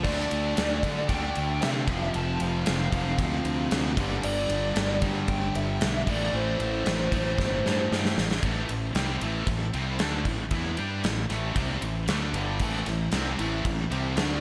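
A driving, aggressive hard rock passage in A minor at 115 BPM opens with everything at once: a dark, overdriven lead guitar melody with slapback echo and delay, riffs from two bright high-gain guitars (one double-tracked and very quiet) and a hollow-body overdriven guitar, a round, fuzzed fingered bass and a punchy gated drum kit up front with bright cymbals. A thick, gritty tonewheel organ with key click and slow rotary swirl holds very quiet sustained chords underneath, while chords move from D5 through F5 and G5 to Am. The lead drops out at 7.9 seconds, a drum fill from 7.4 seconds ushers in a new section, and the semi-hollow guitar returns at 12.6 seconds, all set in a lush hall that gives a big arena sound.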